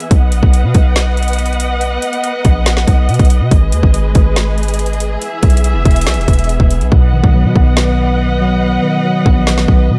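Lush bowed strings with expressive vibrato and portamento hold sustained chords over an up-front trap kit of hard-clipped kick, woody snare and metallic hats and a punchy, heavy 808 bass in this triumphant, dreamy half-time hip hop excerpt, until at 6.9 seconds the hi-hats fall silent and a mellow, clean tine electric piano with a low-pass filter enters, all in a dry room.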